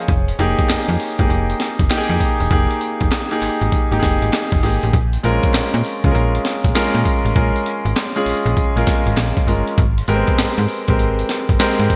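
A swung sixteenth-note groove from a gritty, overdriven breakbeat kit with a thumpy kick and gated reverb drives this slick, confident new jack swing excerpt, as a snappy, metallic FM slap bass and an intimate concert grand with audible action noise move through Fm11, Bbm7 and Abmaj9, while a very quiet group handclap sits beneath the bright 1980s-style digital sheen.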